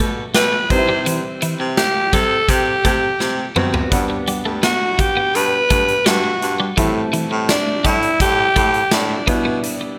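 A straight 4/4 pulse at 84 BPM sets the pace for this romantic, glossy 1980s-style pop passage in G major, cut from a longer piece and tuned slightly low to A4 = 436 Hz. Up front, a raspy, gritty alto saxophone carries the melody between D4 and C5, its punchy, edgy tone trailed by digital delay. Beneath it, a big rock drum kit with a punchy kick, medium-tuned snare, hi-hat and toms enters at 0.3 seconds, drenched in gated reverb, and breaks into a fill from 3.2 to 3.9 seconds. A bright, clean twelve-string electric guitar picks a compressed riff in a narrow low range, shimmering with analog chorus and digital delay. A clear concert grand piano with a worn, natural character and deep bass fills in the accompaniment, while a soft-attack baritone saxophone with a smooth top takes the bass line. The chords move from Em7/B through Cmaj7, Gmaj7 and Am7 before returning to Em7/B, all set in a lush plate reverb and a bright, polished digital sound.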